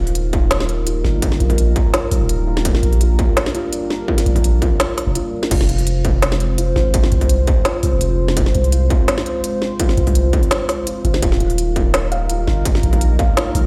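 A dark analog pad and a deep, sine-toned 808-style bass open this tense, moody slice of half-time drum and bass at 168 BPM. The pad holds sustained chords from a sawtooth and triangle blend with a sub octave and a slow attack, colored by chorus, phaser and sidechain pumping, while the up-front bass sits low with a fast attack and a long, mellow decay. An organic electronic drum kit with a woody snare, crisp hats and crash cymbal arrives alongside a distorted, tape-flavored electronic kick that was re-recorded in a small room, both placed forward in the mix with a light swing. A felt-muted upright piano plays soft, boxy, intimate arpeggios in its middle register, trailed by tape echo. The harmony moves from Eb to Fm at 5.5 seconds, just after a brief break at 5.2 seconds, before returning to Eb. The whole passage, cut from a longer piece, sounds as if played through a big sound system in a bare room, with a large studio reverb around it.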